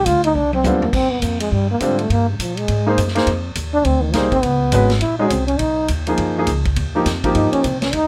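A mellow, close-miked trombone opens this short cut from a small-group swing and bop piece, taking a relaxed jazz solo over a woody, growly upright bass played pizzicato. A vintage drum kit joins almost at once and slips in a brief fill between 0.4 and 0.9 seconds, its dark cymbals, medium-tuned snare and punchy kick heard in a small, natural-sounding room with a rolled-off top. A concert grand piano enters at 0.6 seconds as accompaniment, intimate and up front, with deep bass and audible action noise. The trombone sits up front, singing with a light vibrato through a swinging chord sequence that moves from rootless Ebmaj7 through Gm7b5, Fm7 and Bmaj7 before settling on Eb69. The sound is dry, with little reverb, giving the whole group a relaxed, close-up feel.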